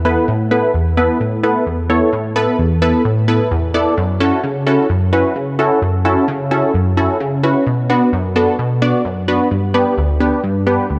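Dark production in a lush hall reverb frames this 11-second pop fragment at 130 BPM, where a punchy, detuned sawtooth polysynth with chorus plays a funky comp alone and up front, its filter-plucked chords moving through a moving notch over Asus2 and F#m7 before shifting to Bm at 7.7 seconds and G at 9.5 seconds for a driving yet melancholic feel.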